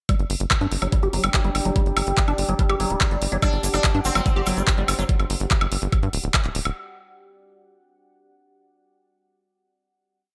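A lightly reverberant digital ambience frames this short, complete psychedelic trance piece, running at 144 BPM in a straight 4/4 with an alien, intense mood. An up-front electronic kick drives a four-on-the-floor pulse from 0.1 seconds, tape-warm and knocking, while an overdriven drum-and-bass kit adds bright programmed hats, handclaps on the backbeat and a high woodblock. Underneath, a tight sequencer bass rolls in sixteenth notes with a punchy sawtooth-and-square filter pluck, and a squelchy, resonant acid line churns above it under a long filter sweep, coloured by phaser, 12-bit sampler grit, sidechain pumping and tape echo. A deep, detuned ambient pad with chorus and its own reverb breathes through slowly shifting dark chords, pumping against the kick. From 3.4 seconds a buzzing, plectrum-plucked sitar repeats a short shimmering riff through phaser and tape echo, joined by a grainy egg shaker playing quiet sixteenths in the background.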